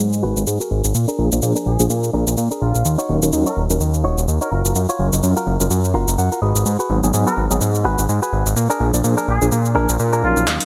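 Filtered disco house with a funky, sensual groove and swung sixteenths, built over a fat, detuned sawtooth bass up front and a punchy, overdriven analog drum machine of hi-hat, shaker and snare, while a bright, twangy direct-recorded guitar riff carries 12-bit sampler grit and a short fill near the middle. A worn, slightly out-of-tune tine electric piano with tremolo and phaser enters at 1.2 s, and a tight, vintage trumpet section with light vibrato takes the melody from 1.7 s, joined by a barely audible tambourine. A filter sweep runs throughout amid sidechain pumping, lush hall reverb and glossy 1980s-style digital sheen, and an overdriven electronic kick sits in the background for a drum fill at 10.5 s in this excerpt.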